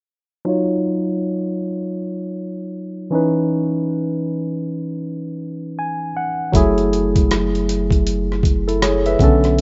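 R&B with a neo-soul lean, this short cut from a longer piece sets a late-night, soulful mood at an unhurried pace with a swung sixteenth-note feel. A barky tine electric piano carries the accompaniment from the start, bright and up front, moving through Ebm9, Dbm9 and Gbm9 chords while a low-pass filter sweep shapes its tone throughout, and it plays a short fill around 5.4 seconds. At 6.5 seconds a rubbery square bass and a boom bap sampler-style drum kit enter together. The bass sits low, hollow and bouncy with a resonant filter pluck, while the drums bring a thumpy kick, hi-hat and rim click with a gritty, pitched-down, tape-warm character, as if re-recorded in a small room. Light reverb and a rough home-demo mix with a dulled top end give the whole thing an intimate, unpolished feel.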